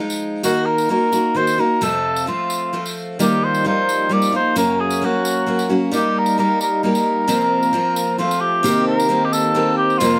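The music moves in a lilting three-beat metre with a straight feel, giving this short acoustic folk passage a gentle, nostalgic mood. A bright, picked steel-string acoustic guitar sits up front with the accompaniment, while a jingly tambourine adds light percussion. A mellow cor anglais carries the melody in a classical style, its light vibrato and vintage colour placing it at the centre of the sound. At 3.2 seconds a reedy, breathing pedal harmonium enters in the background with sustained chords. The harmony drifts through Ebm, F, Ebadd9, Gb and Eb/G to an Fsus4 resolving to F, before turning to Cm7 at 8.7 seconds, all heard through close, detailed microphones and light reverb.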